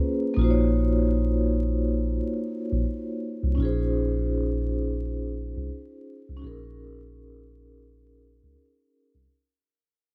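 Dark, warm production with a small room reverb and a bed of vinyl crackle gives this brief hip hop fragment, cut from a longer piece, a dark, reflective character. In free time, a vibraphone played with soft mallets opens at 0.0 seconds, its metallic, ringing tone carried by a slow motor vibrato and filtered into an airy, up-front presence. At 0.4 seconds a mellow tine electric piano enters in the bass register, clean and direct, anchoring the harmony from below. The chords move from Ebm9/Bb to Dbmaj7/Bb at 3.6 seconds and on to Ab9sus4/Bb, all resting over a Bb in the bass, which keeps the dark mood suspended. The whole passage fades out across its 9.3 seconds.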